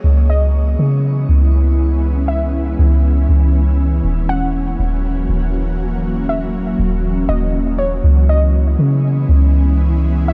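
Hip hop in a half-time feel with an ethereal, hazy mood, cut from a longer piece and set in a dark, warm production with digital ambience. An airy, evolving pad holds sustained chords moving from C#m9 to D#m7 and back, while a warbling, lo-fi pluck with chorus and tape echo carries the melody high above it. Underneath, a soft, round 808-style bass sits deep and up front, its fast attack decaying beneath the haze.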